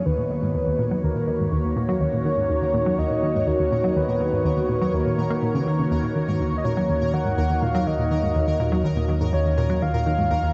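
Ambient, sequencer-driven space music in Eb minor at 123 BPM, mysterious and hypnotic, cut from a longer piece and resting on a single Ebm7 chord, where a swirling, up-front phased pad with shimmer reverb holds sustained chords, a bright filtered analog pluck with chorus and delay plays a riff, a soft octave-layered synth lead with vibrato and shimmer reverb carries the melody, a deep, round bass fades in from the background, and a faint pulsing gated texture joins at 0.5 s, all set in a huge, dark reverb with an 8.9-second tail.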